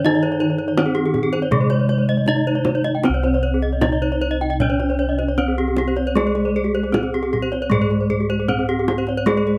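A straight 4/4 pulse at 77 BPM carries this hypnotic, shimmering fragment of Balinese gamelan in C pelog: a bright bronze metallophone struck with a horn mallet leads the melody up front, two more ringing metallophones with paired tuning spin arpeggios above it, and mellow bossed gongs played with padded beaters hold the bass with a round, beating tone. A tight, soft-handed kendang sits in the background, while a wooden-mallet metallophone with a vintage, band-limited sound accompanies only until 3.0 s, all heard through close, detailed microphones with little reverb.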